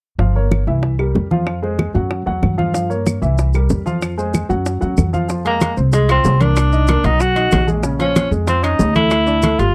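Afro-Cuban jazz at 188 BPM in a driving, fiery mood, cut from a longer piece, with an intimate baby grand piano comping over a dark, growly pizzicato upright bass up front while round, soft-handed bongos and thick-skinned, low-tuned congas churn beneath woody claves, with grainy maracas joining at 2.7 seconds. At 5.5 seconds a tenor saxophone steps forward with light vibrato and scooped notes, joined by ringing, saturated timbales in the background as the harmony moves from Fm toward a closing Dsus2. The dry, close 1970s-style studio sound carries only light reverb, and the piano's action noise is audible.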